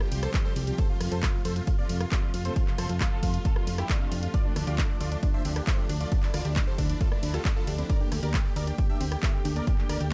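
Dark, warm production with little reverb frames this bittersweet, emotional uplifting trance passage in D minor at 135 BPM, cut from a longer piece. A huge, euphoric supersaw lead carries the melody from the start. Its bright, detuned sawtooth tone is treated with phaser, dub echo and sidechain pumping, while a distant, lush symphonic string section holds sustained chords in the background. A punchy analog drum machine with a tape-warm character supplies handclaps, hi-hat, ride cymbal and rim click, and an up-front, layered electronic kick anchors the beat alongside a round, solid FM bass that also pumps. An electronic swell appears in the background at 3.6 seconds, and at 4.3 seconds a tight, driving sequenced synth enters with mellow chorused arpeggios and dub echo, as the harmony moves from Csus4 and F to Dm, then Gmadd9/D near the close.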